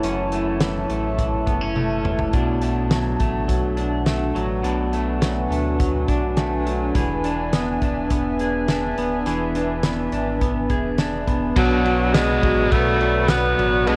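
A worn, warbling cassette haze with light reverb hangs over this haunting, ethereal dream pop excerpt in B dorian at 104 BPM. A detuned, nostalgic pad holds sustained chords while a slightly broken-up, twangy electric guitar plays arpeggios up front through lush chorus and digital delay, over a deep sine sub bass and a loose indie drum kit with a fat snare and dark cymbals that adds a fill at 1.8 seconds as the chords move from F#m7 through Bm7 and E7. At 11.6 seconds a forceful alto saxophone enters with a bright, vibrato-laden melody through digital delay, backed by a double-tracked overdriven guitar with tremolo sitting in the background as the harmony settles on Bm.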